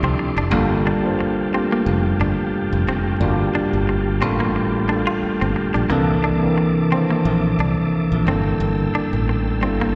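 R&B at 89 BPM in G dorian, this introspective, late-night excerpt swings its sixteenths gently over Dm9, Gm9 and C13 chords, with a mellow tine electric piano carrying the accompaniment up front and a growly, bright fingered electric bass sitting direct beneath it. A twangy, compressed clean electric guitar adds a picked second line, while a tonewheel organ holds sustained chords with chorus vibrato, key click and a fast rotary speaker. The whole ensemble rings in a church reverb with a 2.8 s decay, giving a spacious, hall-like sound to this fragment cut from a longer piece.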